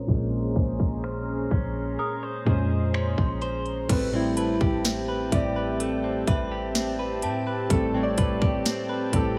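A trap drum kit enters at 0.1 s and sits up front with a hard-clipped kick, sharp snare, crisp hi-hats, finger snaps and crash cymbal in this sensual, longing contemporary R&B excerpt at 63 BPM. It lands over parts already sounding from the start: a deep, round 808-style bass; mellow, wave-folded electric-piano-like synth keys with chorus and a filter sweep through the first 3.9 s; clean, direct-recorded electric guitar arpeggios with digital delay; a smooth, detuned sawtooth pad with chorus; and a ringing, inharmonic FM chime in the background. The harmony moves from Bbm9 to Am9 at 3.9 s within a light small-room ambience.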